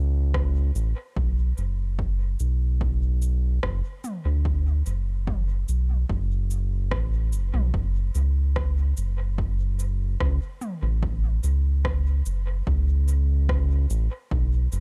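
Ambient dub in F# minor at 73 BPM, spacious and meditative, built on a round, deep analog bass sitting up front and evolving between F#1 and D2, with a punchy, overdriven electronic kick in the background and an organic electronic kit of cabasa, rim click and toms treated with overdrive, small room reverb and dub echo, all in a dark production cut from a longer piece.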